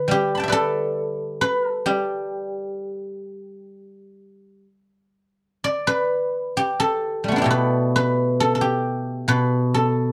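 In a free, rubato pulse, this short cut from a longer piece of traditional Chinese plucked-string music unfolds with a pastoral, flowing mood. A solo guzheng, played with fingerpicks and sitting up front, carries everything across a range spanning B2 to B5, its silvery, ringing tone set in a dark production with moderate studio reverb. A new section begins at 5.6 seconds and carries on to the close at 10.1 seconds.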